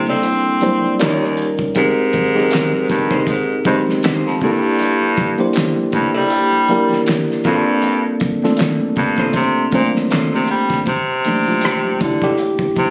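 A worn, slightly out-of-tune tine electric piano with light overdrive sits up front in this smooth, sultry neo-soul R&B piece at 79 BPM in G dorian, moving through Eb7, Abmaj9, Gm69 and Gm11 before taking a short solo over C13 from 10.9 s. Beneath it, a breathy, whispered baritone saxophone carries the bass line with vibrato and a soft attack, while a slightly broken-up, picked electric guitar plays a second line in the background. A cloth-damped, muffled drum kit with a fat snare, tight kick, handclaps, hi-hat and rim clicks swings on 16ths alongside ringing congas, all captured by a phone in the room with light reverb and compression.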